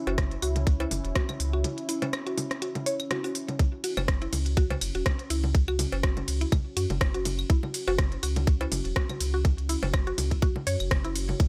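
A tight, up-front electronic kick anchors this clinical, quirky minimal techno excerpt at 123 BPM in 4/4 with a 55% swing on the 16ths, with a thick, saturated triangle sub bass and a woody, round FM mallet pluck riff carrying chorus and tape echo arriving a moment before it, both pumping against the kick. Around them sit a clicky hi-hat, ride and rim-click kit captured in a large room, tape-toned cowbell, bongos and claves with echo, and a deep, moody detuned sawtooth pad with a sub octave, slow attack and built-in reverb that pumps quietly underneath. A break runs from 1.6 to 3.6 seconds, and the overall sound stays dry and close.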